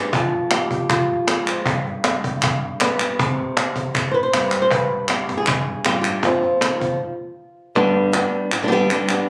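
Flamenco in a dramatic, passionate mood, cut from a longer piece and moving in a straight four-beat feel. A fingerpicked flamenco guitar carries the melody up front with a warm, plate-reverb tone, spanning low bass notes to its upper register over a progression of F minor, G, C and F power chords. Crisp palmas hand claps sit close alongside it, joined by a snappy cajon with snares whose hard-hand strikes have a vintage, band-limited character. The cajon stops at 7.0 seconds, and a break with the harmony suspended lasts until 7.8 seconds, when a new section opens on G with guitar and claps continuing. The sound is that of a phone capturing the players in a club-like space with moderate studio reverb and noticeable compression.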